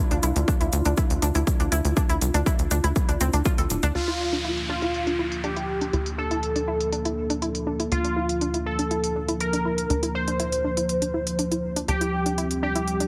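A heavily compressed, radio-like sound with light reverb frames this driving, cinematic melodic techno excerpt at 121 BPM in 4/4, moving from D minor with an added ninth to Bb over D and closing on F suspended second over D, while a deep, moody pad, a round analog pluck arpeggio with chorus, cassette tape and digital delay, and a tight, nasal sawtooth sequencer bass all pump against the sidechain alongside smooth overdriven hi-hats. A punchy, up-front overdriven kick and a grainy egg shaker sit in the opening seconds, with the kick stopping at 3.6 s, and filter sweeps move through the arpeggio from the start. At 4.0 s a juicy, detuned, resonant polysynth carries the melody up front with chorus and dub echo, a downlifter falls beneath it until 7.9 s, and filter sweeps now also run through the polysynth and the pad.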